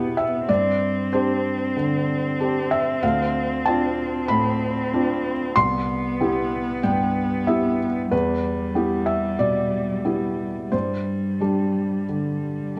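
A soft, felt-muted upright piano sits intimately up front, accompanying a single bowed cello whose rich, even tone and smooth vibrato carry a second line through this reflective, longing neoclassical fragment, its rubato feel and Gsus4-Dm7-Cmaj7-Em harmonies drifting in a moderate recital-hall reverb captured by close, detailed microphones.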